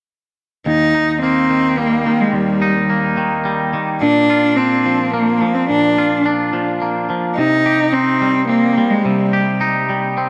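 A clear, focused bowed cello with vibrato carries the melody up front from 0.7 to 9.6 seconds, alongside clean, picked, compressed and twangy electric guitar arpeggios that ring on until 10.3 seconds, both touched with tape echo and set in a huge ambient reverb, in this cinematic, euphoric rock fragment in 3/4 at 107 BPM in Eb major that moves from Eb to Bb to Cm under a dark, warm production.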